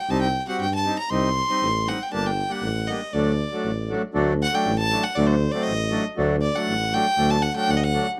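Bittersweet and soulful, this short klezmer passage, cut from a longer piece, moves at 118 BPM in a straight 2/4 and sits in D phrygian dominant. A clear, nasal violin carries the melody up front, its single bowed line earthy and close with light vibrato, an airy bow and a touch of plate reverb. Beneath it, a reedy accordion with dry tuning fills out the accompaniment with a full sound, while a tuba supplies the bass with a soft attack, smooth top and its own light vibrato, played in a jazz style. The harmony moves from Cm to Gm and then D, and the music shifts into a second section at 4.1 seconds. The studio ambience is moderate and the production dark and warm, keeping the violin and tuba forward over the accordion.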